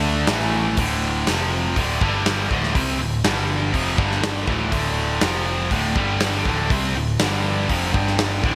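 Aggressive and menacing, this short hard rock excerpt drives forward in a straight 4/4 feel. A bright, high-gain distorted guitar, double-tracked and up front, carries the picked power-chord riff for the whole clip, built on D5, F5 and G5 shapes with an A5 at the start. A second, sludgier overdriven guitar sits in the background and drops out at 0.8 s, while a round, punchy picked electric bass holds the low end throughout. The big acoustic drum kit enters at 0.3 s with a tight kick, a medium-tuned snare and hi-hat, its mid-forward sound placed up front with a rolled-off top. A moderate lush hall reverb and a touch of small room ambience give the mix a glossy, 1980s-style digital sheen, and the clip is cut from a longer piece.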